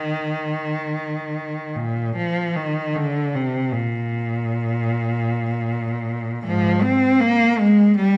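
Classical in free time, this yearning, meditative fragment of a longer piece features an unaccompanied bowed cello, rich and focused with vibrato and a smooth top, played up front by one player between Ab2 and C4 for 8.2 seconds in a recital hall's moderate reverb.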